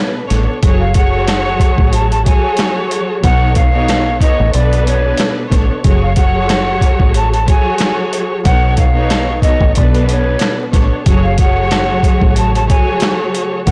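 A breathy, hollow jazz flute carries the melody in this dark, reflective boom-bap hip-hop excerpt, its soft attack and vibrato lifted by a slapback echo over a 92 BPM groove in F# harmonic minor with a light 16th-note swing. Beneath it, an up-front studio string section plays bowed, expressive accompaniment with vibrato and portamento, moving through Bm9, F#madd9 and B7. A gritty, compressed sampler-style drum kit enters at 0.3 seconds with a thumpy kick, medium-tuned snare and hi-hat, re-recorded in a large room and sitting forward in the mix. Alongside it, a deep, round, foam-muted electric bass with tube saturation holds down the low end. At 11.1 seconds, a very quiet, detuned analog pad adds moody sustained chords with chorus and a slow attack. The whole recording is blown-out and overdriven, dry and dusted with vinyl crackle.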